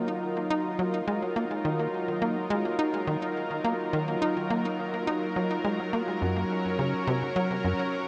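A tight, punchy sequencer bass drives this cut from a longer piece of ambient space music, its nasal sawtooth-and-square riff shaped by a filter pluck with fast attack and decaying notes that sit up front and keep evolving over a straight 4/4 pulse. Cassette tape colouring, delay and shimmer reverb add haze to the bass. Alongside it, a lush unison pad, also up front, holds sustained chords, its detuned sawtooth voices thick, bright and vintage, warbling under chorus and shimmer reverb, with a slow attack and long release. The harmony moves from Ebmadd9 to Gb at 6.2 seconds, and the bass stops at 7.7 seconds while the pad carries on to 8.1. A huge, wet reverb and a tape-softened top end surround the recording, leaving a mood that feels expansive and mysterious.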